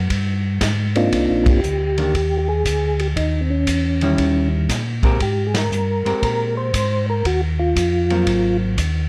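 A soft, flute-like tonewheel organ carries the melody from 1.0 seconds, its percussive second-harmonic attack colored by chorus vibrato and a slow rotary speaker. This late-night, soulful soul jazz organ trio swings in 4/4 at 118 BPM in C minor. A second, round and mellow tonewheel organ holds down the bass up front, also treated with chorus vibrato and slow rotary, while a clean, fingered hollow-body electric guitar adds dark accompaniment beneath. The vintage acoustic drum kit, set in a studio room, brings a punchy kick, medium-tuned snare, hi-hat and shadowy ride cymbal with a rolled-off top. The harmony moves through Cm9, Eb7b9, Abmaj9, Ebmadd9 and Ab9, band accents land at 1.4 and 5.5 seconds, and light reverb lends the trio a touch of space.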